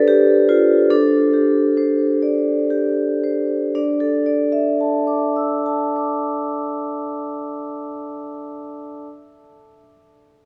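Reflective and hypnotic, this short excerpt from a contemporary classical piece features a solo vibraphone in a slow, rubato 6/8, its dotted-quarter pulse sitting between 37 and 50 BPM. Played with medium hard mallets and the motor off, the vibraphone sounds metallic and ringing, placed up front and spanning D4 to E6. The opening phrase rests on a D7sus4 harmony and slows down through its first 3.8 seconds. At 3.8 seconds a new section moves to Dsus2, and the instrument keeps sounding until 9.1 seconds. A wet cathedral reverb with a 4.4-second decay surrounds the solo, giving each suspended chord a long, spacious tail.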